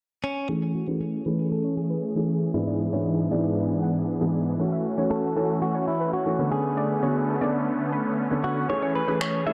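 In a straight 4/4 pulse, this carefree, euphoric dance-pop excerpt sets a twangy, clean electric guitar melody, treated with tape echo and a low-pass filter, over a polished grand piano and huge, lush supersaw chords moving from Amaj7 through E7/G# and F#m7 to Bm9 before returning to Amaj7. A filter sweep runs across the section while a round, warbling analog pluck with chorus sits in the background, and electronic finger snaps arrive only at 9.2 seconds. Light reverb frames a dark, warm production.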